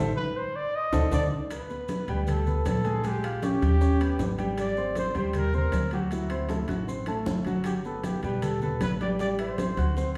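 Heard from further back in a reverberant large studio, this lively, sunny cut from a longer Afro-Cuban jazz piece in G major moves at 156 BPM, with a dark, breathy trumpet soloing with vibrato and scooped notes from 0.2 seconds over an intimate, polished concert grand piano and a woody, thumpy pizzicato upright bass up front, while damped congas, ringing metal-shell timbales, tight high-tuned bongos and grainy maracas join at 0.9 seconds, with drum fills at the opening and at 6.5 seconds as the chords move from Am through Abmaj9#11 and D7 to Gmaj7.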